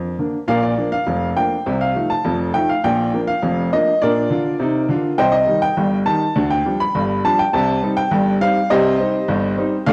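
A cassette-recorded home take with a moderately lush hall reverb frames this cheerful, jaunty ragtime excerpt in a straight 2/4, where a solo baby grand piano, boxy and up front, ranges from deep bass to high treble across Bb, F7/C, Cm and G5/D chords over just under 10 seconds.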